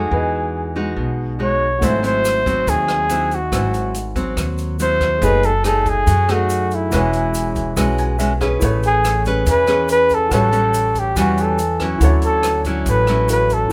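Sunny, breezy bossa nova at 141 BPM in E major, shifting to A major at 8.6 s. An up-front jazz flugelhorn sings a warm solo melody with vibrato and scooped notes over fingerpicked classical nylon-string guitar, a woody, growly pizzicato upright bass and a short-sustained baby grand piano in the background that adds a fill at 7.8 s. An open, natural-sounding jazz drum kit with a boomy kick, hi-hat and rim click joins at 1.8 s alongside a grainy tube shaker, both in a small room, with light reverb, in an excerpt cut from a longer piece.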